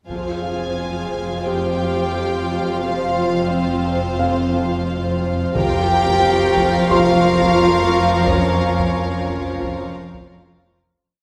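A straight, steady 4/4 pulse carried by a taiko ensemble's big drum ostinato, which sounds briefly at the start and returns at 5.5 s, drives this uneasy, ominous suspense film cue, where warm bowed violins carry the melody over a softly doubling clarinet, a second violin line and tremolo violas, while tight horn and bright trombone sections hold slow chords, a thumb-plucked Celtic harp rings out a pulsing ostinato, woody cellos and double basses sustain the bass alongside a deep rumbling drone, a felt-muted upright piano drops sparse, boxy single notes, timpani add single hard-mallet strokes and high violins enter with dissonant clusters at 5.6 s, all washed in a wet church reverb before fading out from 8.3 s.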